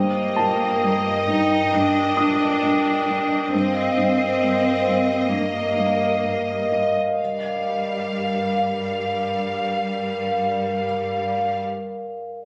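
Captured on a phone in a room with moderate recital-hall reverb and compression, this short cut from a suspense film score feels mysterious and eerie, moving at a slow 66 BPM in G minor. A glassy, ethereal glass harmonica sits up front holding sustained chords over bowed string sections: violins carry a lush, vibrato-rich melody; one cello section plays a distant riff until 7.0 s; and another, close and focused, holds a bass line with a clear double bass section beneath. A vintage grand piano adds smooth background texture from 0.4 s to 7.2 s, as the harmony moves from Eb/G to F7sus4/G before settling on Gm7.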